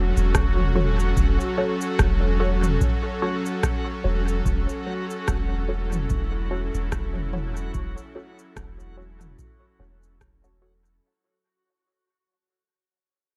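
Swung sixteenths in 4/4 carry this spacious, meditative ambient dub fragment, where an up-front round sub bass and a deep, tape-warm electronic kick in the background anchor an organic electronic kit of cabasa, rim click and toms with dub echo, while muted, phased chord stabs with dub echo, an airy, breathy, warbling pad with chorus, and a reversed, granular texture swelling in its own reverb float over a single F#m/E chord in a dark production that fades from 2.3 seconds.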